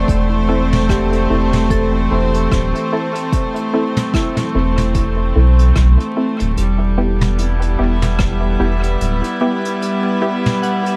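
A slow 74 BPM pulse in 4/4, swung on the sixteenths, carries this hazy, meditative slice of ambient dub in E minor, cut from a longer piece. A deep, overdriven electronic kick sits under a vintage brush kit of hi-hat, rim click and toms, which has a pumping small-room sound and dub echo. A round, soft sub bass holds the low end up front until 9.2 seconds. Bowed chamber strings sustain rich, earthy chords with light vibrato throughout, moving from A minor to E minor at 6.6 seconds. Further back, a pure FM synth bell warbles through arpeggios, and a muted, detuned sawtooth chord stab adds filtered plucks, both treated with chorus and dub echo. Light studio reverb and a layer of vinyl crackle frame the recording.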